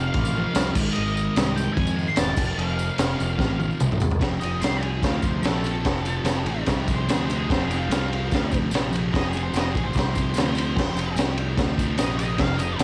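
A straight 4/4 pulse at 147 BPM drives this rowdy, swaggering garage rock cut, taken from a longer piece, with a crunchy breakbeat drum kit up front, its high-tuned snare, punchy kick and dark cymbals saturated and rolled off at the top, while a jingly tambourine sits in the background. A double-tracked fuzz guitar riffs over F and Ab chords, a growling, overdriven fingered bass digs low, and an octave-fuzz lead guitar carries the melody before a drum fill from 3.4 to 4.2 seconds sets up its solo over an F5 chord. The home cassette recording is dry and gritty, with tape grain coloring the guitars and drums.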